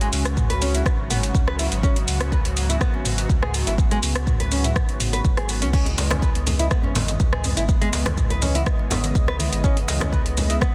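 This is an earthy, hypnotic afro house excerpt in C# minor at 123 BPM, cut from a longer piece and moving in a straight 4/4. A detuned sawtooth pad holds smooth, sustained chords with slow attack, long release and chorus, while a small, fingerpicked nylon-string guitar plays arpeggios through a dub echo. Both, along with a round, sine-like sub bass, pulse with sidechain pumping. An up-front, deep electronic kick enters at 0.4 seconds beside a produced afro-pop kit of metallic hi-hats, rim clicks, shaker, toms and crash, with studio reverb on the kit and kick and soft clipping on the snare. The harmony moves from F#sus2 to C#m9 at 5.7 seconds, where very quiet, bright congas arrive, followed at 5.9 seconds by a deep djembe played with soft hands in the background. Light reverb and digital ambience surround a dense, heavily limited modern master.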